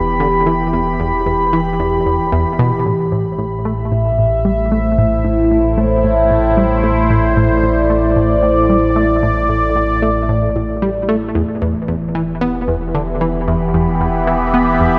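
A bright, resonant pad and a round sine sub bass open this mysterious, hypnotic excerpt of ambient space music, with a tight sequenced synth riff joining at 0.2 seconds. Moving at 113 BPM in a straight 4/4 in A minor, the piece drifts from E minor to A minor at 2.9 seconds and back to E minor at 11.4 seconds. The pad sits up front with sustained chords, its detuned, wave-folded sawtooth and triangle tones evolving under chorus and phaser. Beneath it, the deep sub bass holds the low end, while the driving riff mixes sawtooth and square waves with a plucky filtered attack, colored by chorus, phaser and analog delay. A wet echo chamber with a 2.6-second reverb tail bathes the echo-heavy mix, giving the whole passage a cavernous, trance-like spaciousness.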